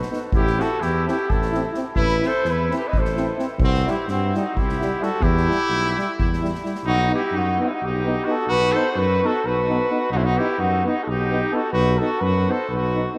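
A mellow, distant flugelhorn carries the melody with light vibrato in this fiery, restless Balkan brass band fragment in 7/8 at 258 BPM (eighths). A clear trumpet sits up front on a second line, over an up-front tuba bass, a soft-attack euphonium and a close-miked warm trombone in the background. An airy street-band drum kit with a boomy kick and medium-tuned snare drives the opening until 6.8 s, as the harmony moves from Am through C and Em to B, all bathed in a vast, echoing cathedral reverb.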